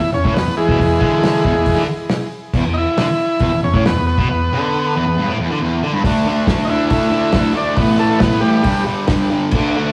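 Garage rock with a rowdy, raw edge drives along at 138 BPM in a straight 4/4, cut from a longer piece. A bright, double-tracked fuzz guitar sits up front with a picked, compressed riff spanning E2 to D4, while a buzzy vintage combo organ carries the melody between E3 and E4, its light vibrato and digital delay keeping it clean beside the distortion. A cloth-damped acoustic drum kit enters at 0.2 seconds with thuddy, dark tones, a fat snare, a tight kick, hi-hat and dusky crash cymbals, its rolled-off top keeping it dry and smooth under the guitar. The opening rests on an E chord, then at 6.0 seconds the music shifts through D5, A5 and G5 power chords, and the organ drops out at 8.8 seconds while the guitar carries on to the cut. A moderate stone room reverb and warm saturation give it the rough feel of a small rehearsal room.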